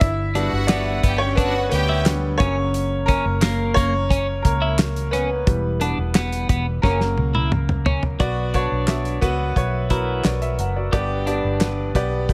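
A small room with light reverb frames this bittersweet, dramatic piano-driven pop excerpt, cut from a longer piece and set in a straight 4/4. A clear, woody upright piano sits up front and carries a polished solo through the opening 8.2 seconds, with chords moving from G through F# and Em. A damped 70s drum kit supports it with a fat snare, tight kick, hi-hat, handclaps and toms, its dry, rolled-off top also placed up front, and it plays a fill from 6.8 seconds. Beneath it, a dark, round, foam-muted fingered electric bass sits low, while a clean, compressed twelve-string electric guitar plays a picked riff almost throughout. A distant, lush violin section adds a brief bright, bowed second line with intense vibrato near the start, and the closing stretch settles on Bm before returning to G.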